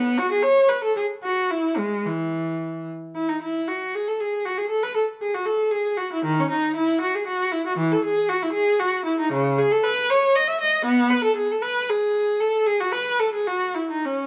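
Closely miked with fine detail and a light reverb, this short excerpt from a baroque-style suite movement features a single viola with a rich, smooth, even tone and vibrato, bowed and placed up front. The dance in 3/4 has a radiant lilt, moving between 100 and 121 BPM with a flexible rubato, and spans C#3 to E5 in a tuning of A4 = 437 Hz. A brief opening passage in E major gives way at 3.2 seconds to a longer second section that turns to C# minor at 9.3 seconds.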